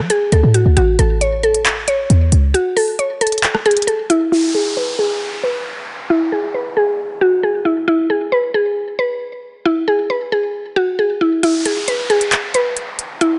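A woody, round FM mallet pluck with chorus opens over a punchy, tight 808-style bass on a D to A change in this hard-hitting, melancholic half-time trap piece at 135 BPM, joined at 0.1 s by an electronic kit of crisp hi-hats, handclaps and rim clicks, before a filter sweep takes hold of the pluck at 4.3 s as an electronic downlifter enters, with the drums and downlifter coming back together at 11.4 s in a lightly reverberant space.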